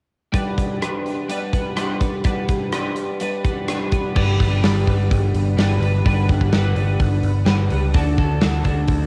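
A straight 4/4 pulse from a big, mid-forward rock kit, with tight kick, medium-tuned snare, rim click, hi-hat and crash, drives this anthemic, cathartic quiet-loud alternative rock fragment from 0.3 seconds, cut from a longer piece. A clean, compressed twelve-string electric guitar plays arpeggios through analog chorus and plate reverb over a G chord that moves to D at 7.9 seconds. A growly, overdriven picked bass joins at 4.2 seconds for the second section, all captured as a home recording on cassette in a moderate studio reverb.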